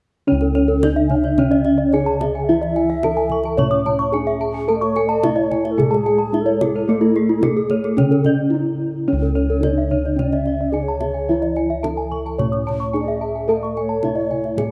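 A bronze metallophone carries the melody of this hypnotic, brilliant Balinese gamelan passage at 109 BPM in C# pelog. Around it, a lower metallophone accompaniment and two higher metallophone arpeggio lines shimmer with the beating of paired tuning, over round, bronze bossed gongs in the bass and tight, hard-handed kendang. An airy, tongued bamboo xiao enters at 1.1 seconds with an expressive second line, and a brief break at 8.3 seconds interrupts the light, small-room sound of this rough home demo cut from a longer piece.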